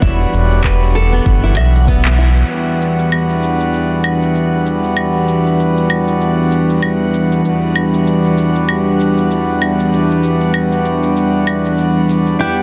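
A reedy, breathing pedal harmonium with tape echo and sidechain pumping sits up front beside an airy, chorused pad in this mystical, earthy organic downtempo excerpt, where a fingerpicked nylon-string guitar, a round analog bass and a deep electronic kick drop out around a band accent at about 2.0 seconds, leaving electronic cabasa, handclaps and claves to carry the swung groove under a huge ambient reverb until a twangy lap steel guitar enters and the nylon guitar returns briefly at 12.4 seconds.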